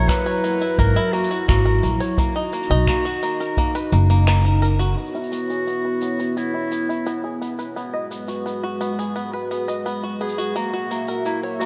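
A woody, up-front upright bass anchors the opening of this delicate, autumnal folktronica excerpt, its pizzicato steel strings thickened by tube saturation before it stops at 4.9 s. Above it, a soft-attack clarinet carries the classical-style solo melody through a diffuse ambient delay, while a detuned analog pad of sawtooth and triangle tones with a sub octave holds slow-blooming, chorused chords. A bright, twangy bluegrass banjo played with fingerpicks spins percussive arpeggios, roughened by vintage 12-bit sampler grit and a low-pass filter that begins to sweep at 5.0 s. A punchy, dark kick plays until 3.7 s beside a smooth, small-room brush kit of finger snaps, hi-hat and shaker with a rolled-off top. At a straight 86 BPM in C# dorian, the harmony moves from F#7 to a rootless Bmaj7, then through C#m7 and G#m7 to F#7/A#, all within a dreamy mix soaked in lush hall reverb.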